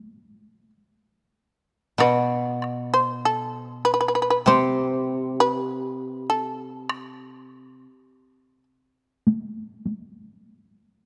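Closely miked with light reverb and fine detail, this austere, still excerpt of Japanese chamber music in A hirajoshi drifts in rubato at 46-51 BPM, opening on a buzzing, plectrum-plucked shamisen melody alone before a bright, woody koto accompaniment and a dry, heavy-sticked taiko ensemble join at 2.0 seconds, with the taiko sounding on after the shamisen stops at 8.6 seconds.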